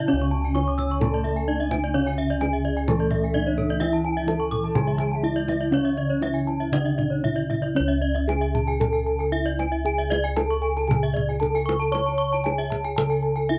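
Bronze metallophones and up-front bossed gongs open this shimmering, hypnotic Balinese gamelan excerpt in C# pelog at 115-129 BPM, the soft, padded-mallet melody ringing over round, beating gong bass while two bright, horn-struck metallophones spin arpeggios above, one sitting in the background with an analog delay. A deep, vintage-sounding kendang played with hard hands drives the straight 4/4 pulse, and a boxy metallophone accompaniment in the low register fills the middle until 7.8 s. A pure, crisp bamboo bansuri with vibrato floats as a second line in the background until 6.6 s, all within a light reverb, while paired tuning lends every metallophone its beating shimmer.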